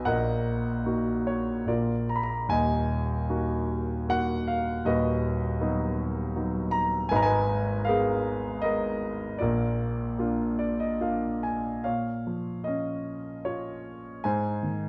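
A dark, warm recital-hall sound with moderate reverb frames a single grand piano, heard up front and natural in tone, in this short, melancholic fragment of a lyrical classical solo. In a rubato 3/4 at roughly 71-81 BPM, the piano moves through reflective harmonies in Eb minor across a range from Eb1 to Cb6, with a brief piano fill at 10.2 s. The music then shifts into Bb minor at 11.8 s before the fragment breaks off.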